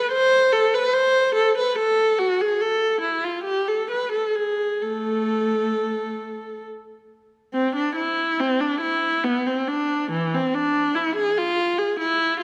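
A flowing, dance-like 3/4 pulse moves with rubato at 64-74 BPM in this classical, baroque-style suite movement for unaccompanied viola in A minor, cut from a longer piece. The single bowed viola sits close and up front, its rich tone shaped by vibrato, soft attacks and expressive portamento as it ranges from E3 to C5, with a new section beginning at 7.5 seconds. A moderate concert hall reverb and a dark production frame the 12.4-second fragment.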